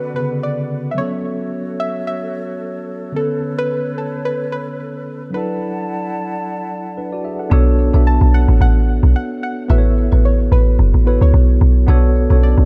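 Dry, dark production gives this late-night amapiano fragment, cut from a longer piece, a deep and close feel, with a soft, round pluck carrying the melody through chorus and tape echo over a mellow, clean tine electric piano. A small flute group adds hollow, vibrato-tinged sustained chords until 7.5 seconds, when the drop arrives. There, a deep, round log drum bass with a fast, decaying attack pushes up front, while woody marimba stabs sit in the background with their own tape echo.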